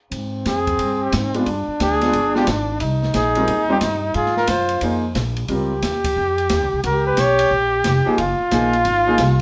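Warm, sophisticated small-group swing cut from a longer piece: a soft-attack flugelhorn with vibrato carries the melody from 0.5 s over a bright, forceful trombone second line with scooped notes, a woody pizzicato upright bass, a dark, smooth drum kit with a boomy kick, and a clear grand piano entering at 1.3 s, heard from further back in a wet club reverb.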